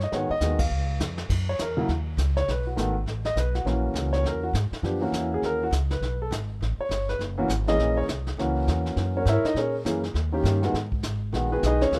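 A brisk swing at 203 BPM in 4/4 drives this sophisticated jazz piano trio excerpt in F# mixolydian, with the upright bass giving woody, growly pizzicato support up front and the vintage brush drum kit adding dark cymbals, a punchy kick and a rolled-off top from a natural studio room. After a band accent at 0.6 seconds and a brief drum fill, the intimate concert grand piano, with audible action noise, deep bass and long sustain, takes a solo from 1.3 seconds over changes centred on F#7, B7, Gadd9 and a closing turn to G#m7. The sound is a rough home demo mix with studio reverb, cut from a longer piece.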